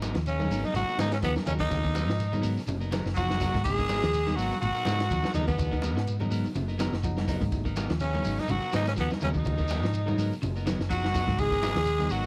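Afrobeat in a defiant, funky mood, this short cut from a longer piece rides a lightly swung sixteenth-note feel. A round, up-front hollow-body short-scale bass, played with the fingers, anchors the groove alongside a compact cocktail kit with a punchy kick, high-tuned snare, hi-hat and ride. Ringing congas and a grainy shekere sit farther back. From 0.3 seconds a growling tenor saxophone carries the melody up front, joined by a very quiet, edgy alto and a background baritone with scooped notes and tape echo on second lines. A semi-hollow guitar picks arpeggios low in the mix and a clean electric guitar adds stabs, while a worn, slightly out-of-tune tine electric piano, lightly overdriven and very quiet, accompanies and plays a brief fill at 6.6 seconds. The sound is dry and close, in the manner of a 1970s studio recording.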